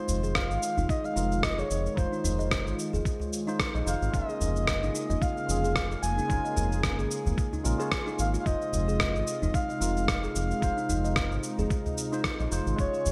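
A breathy, flute-like synth lead with chorus, tremolo and vibrato opens this mystical, earthy organic downtempo excerpt at 111 BPM, over a clean tine electric piano and a smooth, detuned analog pad, both pumping to the sidechain in the background as the chords move from Fm7 to Bbm7/F to Ab6/F. A round, up-front analog bass, gritty sampler-style cabasa and rim click with gated reverb, and a deep, very quiet udu enter at 0.1 seconds, with a woody kalimba arpeggio carrying delay from 0.2 seconds and a thumpy, compressed electronic kick from 0.4 seconds, all under a 16th-note swing. The sound is a bright 1980s-style digital production with light reverb and digital ambience.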